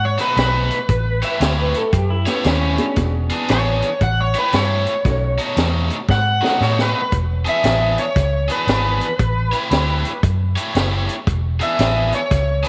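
An overdriven slide guitar with slapback echo carries the melody over a round, foam-muted fingered electric bass in this soulful, gritty electric blues shuffle at 116 BPM in E mixolydian, joined almost at once by a bright cranked stack guitar riff and a vintage drum kit with a punchy kick, a high-tuned snare and a rolled-off top, while a lo-fi, compressed guitar through a small old amp adds a chorused second line from 1.2 to 3.0 seconds and a woody, slightly detuned upright piano accompanies briefly before a drum fill leads into the slide guitar solo at 7.1 seconds, the whole band set in a moderate echo chamber.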